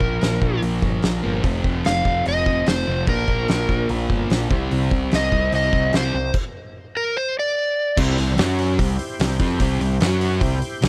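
An overdriven slide guitar carries the melody up front in this raunchy, gritty stretch of blues rock power-trio and southern rock, cut from a longer piece and moving at a straight 147 BPM in 4/4 in C mixolydian. Beneath it, a double-tracked fuzz guitar grinds out the riff while a growling picked electric bass, direct and amped with overdrive, anchors the low end. An oversized low-tuned drum kit brings a fat snare, punchy kick, dark cymbals and a rolled-off top, sounding saturated and placed up front in a bright stone room. Deep in the mix, a very quiet tonewheel organ holds thick, overdriven chords with second-harmonic percussion and a slow rotary speaker. The harmony moves between Bb, F and C before a stop from 6.3 to 8.0 seconds. The slide guitar then drops out at 8.0 seconds as the band shifts into a new section that alternates C and F#5. The sound is a dry, close 1970s-style studio recording with little reverb.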